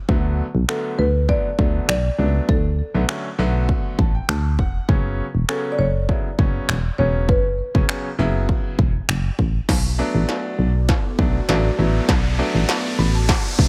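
A straight 4/4 dance-pop groove at 100 BPM comes from an industrial drum kit, with its heavy kick, clanging snare, finger snaps and crash cymbal up front beside a punchy, round FM bass, while a brilliant concert grand piano adds polished, short-sustained accompaniment to this driving, bittersweet B minor excerpt, the bass and piano pumping with sidechain. A woody marimba carries the melody from 0.7 s through a digital delay, and at 9.7 s a drum fill and build-up begin as a shimmering, chorused pulse-width pad enters in the background, also sidechain-pumped, joined by an electronic riser from 11.3 s. The mix carries little reverb.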